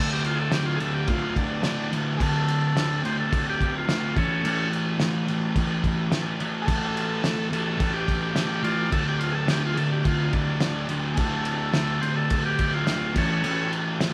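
Gritty and menacing, this garage rock excerpt pairs an up-front, thick, double-tracked fuzz guitar riff in a low register with a buzzy vintage combo organ melody coloured by phaser and a muffled, cloth-damped drum kit with a fat snare, tight kick and dark cymbals, the band playing live together in a stone room with a moderate reverb.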